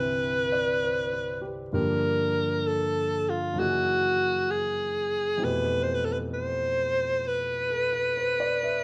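A clear alto saxophone carries the melody in this late-night, intimate jazz excerpt, singing up front as a solo voice with vibrato, scooped notes and a smooth top end, all within a compact range from F4 to C5. A plate reverb gives the horn's tone a soft halo. Beneath it, a warm concert grand piano supplies the accompaniment with a vintage character and deep bass, reaching from C2 up to E5, and the audible action noise of the instrument adds to the close, private atmosphere. The slow, swung pulse moves through a brief harmonic passage from Cmaj7 to Gm7, then F#13, landing on Fmaj9#11 at 5.4 seconds. Both parts play throughout the 8.8-second fragment, cut from a longer piece, set in a moderate, large studio space.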